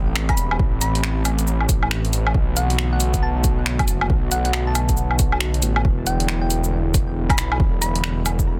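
A swung 16th-note groove at 137 BPM in 4/4 drives this wistful, nocturnal future garage excerpt in E minor, built on a punchy electronic kick and an up-front deep house kit of cabasa, finger snaps, dark hi-hats and woodblock, with soft clipping on the snare. Beneath it, a menacing, detuned saw bass with a filter swell and saturation pumps against the sidechain alongside a warbling, nostalgic lo-fi pad carrying chorus and its own reverb over sustained Am7, Bm7 and Em7 chords. A round, tine-like synth pluck with chorus and tape echo sits in the background, and the mix is dry, dense and heavily limited.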